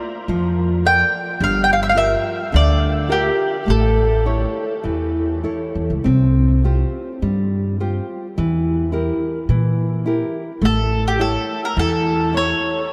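A huge, wet reverb places this short fado-style ballad in a vast, echoing space, with each instrument still sitting up front. The mood is nostalgic and tender, moving at 105 BPM in 4/4 with a loose, rubato feel, cut from a longer piece. A picked mandolin with round, double-string tone carries the melody, falling silent at 4.2 seconds and returning at 10.7 seconds. Beneath it, a fingerpicked nylon-string guitar with fresh strings and a small, warm voice supplies the accompaniment throughout. A pizzicato upright bass joins at 0.3 seconds with a woody, thumpy low end. The harmony drifts through Bbmaj7, Gm7, A, Csus4 and Edim before settling back on A.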